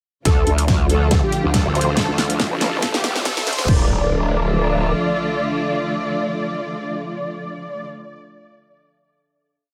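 A half-time 140 BPM groove in 4/4 with a light 16th swing drives this heavy, menacing wobble dubstep piece in D minor, where a punchy electronic kick and a dubstep kit with a huge snare and metallic hats build from 0.3 seconds alongside an aggressive, growling bass, joined at 1.1 seconds by a nasal vowel-sweep wobble bass answering it, while a smooth supersaw riff, lush bowed strings with sidechain pumping, an airy breathy pad and background risers carry on to a final Dm chord held from 3.7 seconds.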